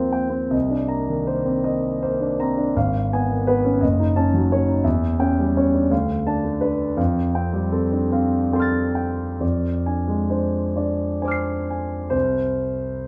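In a 6/8 with free-flowing rubato, this luminous, dreamy impressionist piano fragment, cut from a longer piece, places a warm concert grand up front, its deep bass anchoring lush chords that drift through a chain of minor sixth harmonies before settling on F added-ninth and F minor sixth colours, all bathed in the wet glow of a large studio reverb until the harmony falls away at 12.1 seconds.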